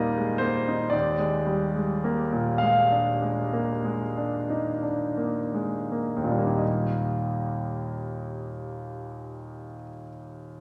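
A romantic classical nocturne for solo piano in Eb major, this short excerpt unfolds in 9/8 at a very slow 26-40 BPM, with free rubato and a tender, nostalgic mood. A bright concert grand sits up front with brilliant, polished highs and a deep bass, spanning Eb2 to F5 as it moves from Eb to Bb7/Eb and slows down through the opening phrase. At 6.6 seconds a new section returns to Eb, all bathed in a wet scoring-stage reverb with a lingering tail.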